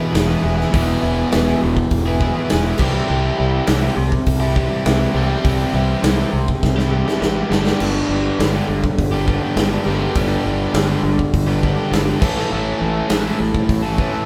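Two double-tracked overdriven electric guitars, one crunchy and bright and one up front and warm, open this confident, driving classic rock riff at 102 BPM in a straight 4/4, joined by a growling, overdriven fingered bass and a big, natural acoustic drum kit with a tight kick and medium-tuned snare, all moving through E, C, G and A, with a drum fill at 6.6 seconds and a moderate stone-room reverb giving the feel of a band playing live together.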